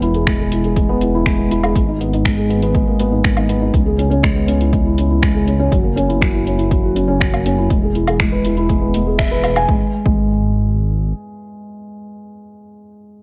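A soft, boxy felt-muted upright piano riff with delay opens this melancholic, intimate piano and strings electronica at 121 BPM, cut from a longer piece, joined at once by a deep, rumbling, detuned sawtooth bass with sidechain pumping and a deep house kit of finger snaps, metallic hi-hats and woodblock, plus a punchy electronic kick from 0.3 seconds, both drum parts overdriven, as chords move from E through G#madd9, C#m7 and F#7 back to E before the piano carries on alone from 11.1 seconds to 13.2 seconds in a lightly reverberant room.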